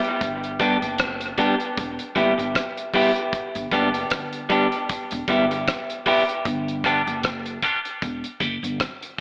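Heard through a narrow AM-radio sound soaked in a wet spring reverb, this laid-back, spacious dub reggae fragment at 77 BPM swings its sixteenths in G major, moving between G and Em. A damped 70s drum kit with a dry, tight kick and rolled-off top keeps hi-hat, kick and rim click going, while a woody, thumpy pizzicato upright bass sits low and warm underneath. Up front, a picked, compressed electric guitar at the edge of break-up carries tape echo and a high-pass filter, with a filter sweep on its sound from 3.3 seconds onward.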